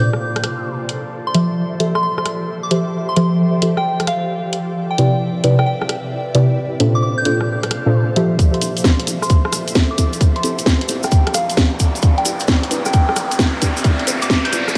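This is a bouncy, sunny UK garage excerpt in a two-step style, moving at 132 BPM in F major with a heavy sixteenth-note swing. It is cut from a longer piece. Deep, mellow chord stabs with a warbling, detuned vintage character sit up front, cycling through lush major-ninth chords from Bb to F to C. Above them, a soft, pure FM synth bell carries the melody with chorus, phaser and delay, while an ethereal, airy pad holds sustained chords that pump against the beat. A garage drum kit of bright hats, rim clicks and a cracking snare drives the groove from the start. Filter sweeps move across the stabs and pad, and at 8.4 seconds a tight electronic kick and a grainy acoustic cabasa join for a build-up, with an electronic riser coming in at 10.1 seconds. The whole mix is dreamy and soaked in a long cathedral reverb.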